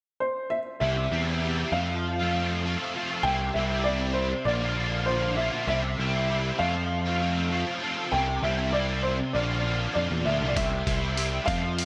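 A woody, slightly detuned upright piano opens this wistful, jangly indie rock excerpt at 98 BPM in C mixolydian, carrying a delayed melody as a crunchy, double-tracked overdriven guitar riff with ensemble chorus and a growling, overdriven picked bass arrive up front at 0.8 seconds over C, F and Bb chords, before a muffled, pitched-down sampler-style kit with a thumpy kick and hi-hat slips in at 10.6 seconds, all set in a lush hall reverb with bright 1980s-style digital production.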